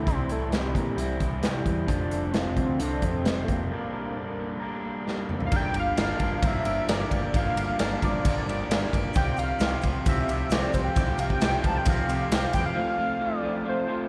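A cathedral-sized reverb wraps this upbeat, jangly indie rock excerpt at 132 BPM, where a punchy, up-front acoustic drum kit with bright cymbals drives a growling overdriven bass, a raw garage guitar riff and a twangy, slightly broken-up guitar sitting in the background. Over them a thick, detuned unison synth lead with vibrato carries the melody, moving from C through Fadd9 to a break on Gm at 3.7 seconds, closed by a drum fill. A very quiet grainy shaker and a shimmering, retro pulse-width pad with chorus slip in near 9.2 seconds on Csus4 before the passage settles on F.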